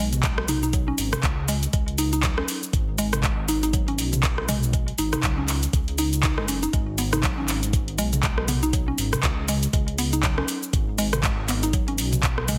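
Heavily compressed with a radio-like squeeze, this short afro house excerpt sits in light reverb and digital ambience, carrying a spiritual, hypnotic mood at 120 BPM in 4/4 with a 58% swing on the sixteenths. It rests on a single G# minor chord throughout. A woody, mallet-like FM synth pluck plays arpeggios between F#3 and D#4, its round, mellow tone treated with chorus, delay and sidechain pumping. Beneath it, a dark detuned saw bass rumbles between F#1 and C#2, blending sawtooth, square and sine layers into a beating, sustained low end with sidechain pumping. An afro-pop drum kit sits up front from 0.1 seconds with handclaps, metallic hi-hats, rim clicks, shaker and toms. An electronic kick with a knocking punch joins at 0.2 seconds, and both percussion parts were re-recorded in a large room.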